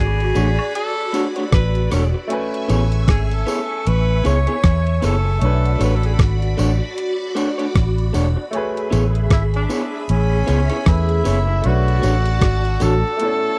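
Over a crisp 8-bit drum machine with a thumpy kick, hi-hat and rim click, swung at 77 BPM in 4/4, a dark, round, foam-muted electric bass sits up front, while a slightly broken-up guitar through a small old amp adds picked stabs bathed in spring reverb. This romantic, tender lovers rock reggae excerpt moves between Bm9 and Amaj9 as a distant, roomy tenor saxophone with light vibrato and tape echo carries the melody, and a swirling, bright string machine with ensemble chorus and phaser holds a sustained second line alongside a clear baby grand piano in the background. Tambourine and woodblock add compressed, saturated touches far back in a dry, close 1970s-style studio sound.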